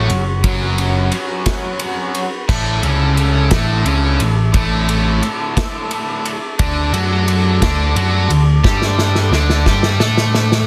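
In a slow, straight 6/8, a loose indie drum kit with a tight kick and a medium-tuned snare sits up front in a small, pumping room, working crash, ride, kick and snare and closing with a fill from 8.6 seconds. This carefree, jangly indie rock excerpt sets a cranked stack guitar's bright, overdriven riff and a growly, punchy overdriven picked electric bass at the front, while a second overdriven electric guitar adds its riff through lush chorus and analog delay over F#5, Asus4 and D5. A vintage, buzzy combo organ with heavy vibrato holds clean sustained chords in the background, all in a dry, dense, heavily limited modern master.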